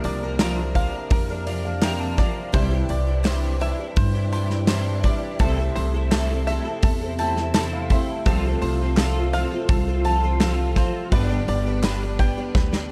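This uplifting, warm indie folk piece, cut from a longer work, opens at once with a full band in straight 4/4: a natural country drum kit up front with a punchy kick and medium-tuned snare, and a woody, thumpy pizzicato upright bass close beside it. A picked twelve-string acoustic guitar rings bright and shimmering, its octave-doubled strings thickened by an ensemble chorus, while a twangy bluegrass banjo plays percussive fingerpicked arpeggios above. Further back, a felt-muted upright piano adds soft, intimate accompaniment, and a reedy, breathing pedal harmonium holds sustained chords. From 0.4 seconds, a crisp, very quiet group handclap and a jingly tambourine join the texture. The piano adds gentle fills, first at 1.1 seconds and again later, over a progression that moves from Bb/C through Cadd9, Am/C and F/C to G. The dark production carries light reverb, and a drum fill at 12.5 seconds closes the excerpt as the arrangement builds.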